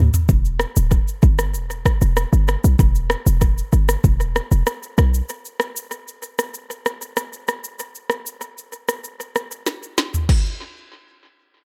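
Mellow and sultry, this afrobeats excerpt from a longer piece moves at 96 BPM in a straight 4/4, set in E minor. A short 808-style bass sits up front, its sine tone carrying a noise layer with a fast attack and a punchy, tight, decaying character, ranging from D1 to D2 until it stops at 5.2 seconds. An electronic, produced afro-pop drum kit plays from 0.1 to 10.4 seconds, also up front, with a deep kick, a woody snare, rim clicks, shaker, crash cymbal and toms. The drums are treated with tape echo, which gives the dry mix its echo-heavy character. A drum fill opens the track, and another arrives at 9.7 seconds before the music turns toward a new section.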